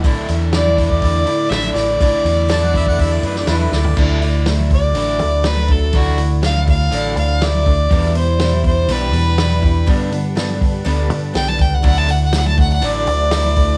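Hopeful and warm, this folk rock and heartland rock excerpt moves at 122 BPM in a straight 4/4, with a bright, boxy picked acoustic archtop guitar and a double-tracked overdriven electric guitar riff sitting in the background over a round, dark fingered bass and a punchy vintage drum kit with a rolled-off top, while a very quiet studio string section holds soft sustained chords. An earthy, up-front fiddle carries the melody from 0.5 seconds, joined briefly by a clear harmonica with scooped notes and analog delay between 2.5 and 4.0 seconds, then a drum fill at 3.7 seconds launches the fiddle solo that runs from 4.0 seconds through chords of Asus4, Em7, Gadd9 and Dadd9. A jingly tambourine slips in near the end, and the guitars, drums, fiddle and harmonica carry a cassette-tape character within a small-room home recording.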